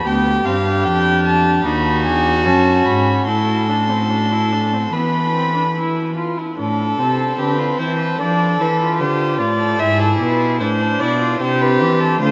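Drenched in a huge, echoing reverb that fills a vast space, this joyful, lively excerpt from a baroque-style fugue for string quartet in A minor moves at 74 BPM in 4/4, with a dark, nasal first violin carrying the melody high above a rich second violin line, a distant viola with light vibrato adding accompaniment, and an up-front cello anchoring the bass, all four bowed on gut strings with a reedy period tone, before the harmony settles onto A minor at 6.6 seconds.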